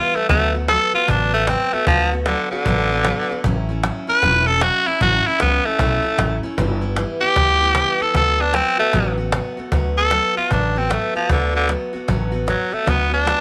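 A swung rockabilly piece at 153 BPM in D major, upbeat and retro, with a cajon's hard-handed strokes and faint snares sitting in the background of a small room while a thumpy, dark upright bass plays pizzicato on gut strings up front. A gritty, raspy tenor saxophone leads with edgy vibrato and a punchy, present pop-style solo through 9.7 seconds before the passage moves into a new section. A bright, picked dreadnought acoustic guitar fills in the accompaniment under light studio reverb, in this short cut from a longer piece.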